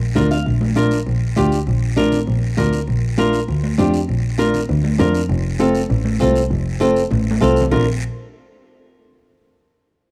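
A brief nylon-string guitar fill opens this sunny, danceable cumbia excerpt before a fingerpicked flamenco guitar and a bowed double bass, earthy with light vibrato and a smooth top, come in up front at 0.2 seconds. Ringing, high-tuned congas sit in the background with a vintage, band-limited tone, while a raspy guiro sounds close and dry, in a close 1970s-style studio recording. A drum fill arrives at 7.1 seconds, and the harmony returns to its opening chord at 7.7 seconds just before the cut.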